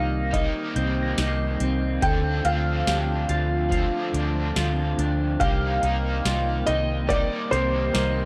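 A felt-muted upright piano carries a mellow melody with tape echo and audible action noise, over a round, punchy muted bass, a bright double-tracked garage guitar with overdrive, harmonic tremolo and lush chorus, a detuned sawtooth pad sitting in the background, and clean, dark picked guitar arpeggios washed in chorus and tape echo. A booming analog drum machine joins at 0.3 s with a deep kick, crisp snare, metallic hats and tambourine, while a barky, gritty tine electric piano shimmers behind with fast tremolo. This haunting, hazy dream pop excerpt moves at a slow 71 BPM in C dorian, drifting between Cm7 and Dm7 in a dry, gritty recording touched with light digital ambience.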